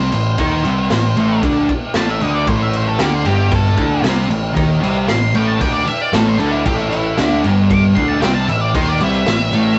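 Garage rock in A minor at 115 BPM, swaggering and menacing, this short excerpt cut from a longer piece rides a single Am chord while a dark octave-fuzz lead guitar solos across the full 9.8 seconds. Beneath it, a double-tracked fuzz guitar sits up front with its riff, a growly, punchy overdriven picked bass holds the low end, and a raw acoustic kit with a boomy kick, medium-tuned snare and dusky crash cymbals pumps in a small room. The rough rehearsal-room sound carries warm saturation, with light reverb and a rolled-off top.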